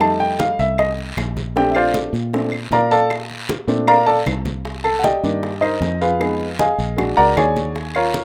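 Afro-Cuban jazz with a lively, sunny mood, this short excerpt from a longer piece is carried by a baby grand piano soloing up front for its full 8.2 seconds, its tone warm and intimate with short sustain, audible action noise and a touch of plate reverb. Beneath it, a fingered electric bass gives a dark, round, foam-muted tone, heard direct and amped in the low register. The percussion sits in the background: low-tuned congas with a bright, thin, damped skin under hard hands, tight high-tuned bongos that sound distant in a larger space, and woody claves that come across compressed and saturated. A raspy guiro adds texture. The harmony moves through F9 and Bbmaj9, then the opening phrase returns at 4.7 seconds over Cm9, Fm7b5 and Bb7alt, all captured in a modest small-room ambience with the rough feel of a home demo.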